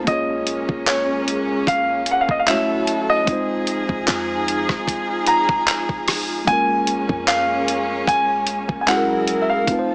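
Contemporary R&B in Bb minor at 75 BPM with a lightly swung 16th feel, this late-night, longing excerpt is cut from a longer piece and moves through Bbm7, Gbm7 and Fm7 before closing on Gb9. An up-front grand piano carries the melody over a worn, slightly out-of-tune tine electric piano and an intimate chamber string section whose bowed, sul tasto chords pump with sidechain. A gritty, compressed sampler-style drum kit sits forward with a thumpy kick, handclaps, hi-hat and rim click, while a deep, mellow 808-style bass stays in the background, all under light reverb and a small speaker sound.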